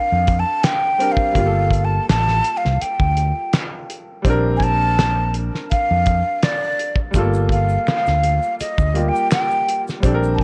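A breathy jazz flute and a bright upright piano open this introspective, soulful excerpt of R&B and neo-soul, with a fretless electric bass and a cloth-damped drum kit joining almost at once. The flute carries the melody up front, its soft attack, vibrato and lifted highs giving the line an expressive, airy quality, while the piano's woody, brilliant chords sit more openly behind it. The amped fretless bass holds the low end close to the listener, and the thuddy kit of kick, fat snare, hi-hat and handclaps has a gentle swing and a tight, rolled-off sound. At 7.1 seconds a tube shaker and finger snaps slip in quietly in the background, close and dry. The harmony moves between Bb69 and Gm9 chords, and the small-room sound is coloured throughout by worn cassette tape with a warbling pitch drift.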